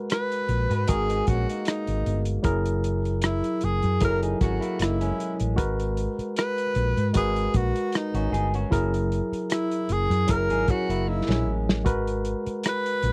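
A dry, close 1970s-style studio sound frames this bittersweet, smooth snippet of lush soul at 77 BPM in G# minor, where a breathy, subtone tenor saxophone sings the vibrato-laced melody over a worn, slightly out-of-tune tine electric piano, a muffled, lo-fi soul drum kit with a tight kick and a fill at 11.1 s, a dark, round hollow-body bass, and a slightly broken-up picked electric guitar riff that drops out at 11.8 s as the G#m9 and F#9 chords sway beneath.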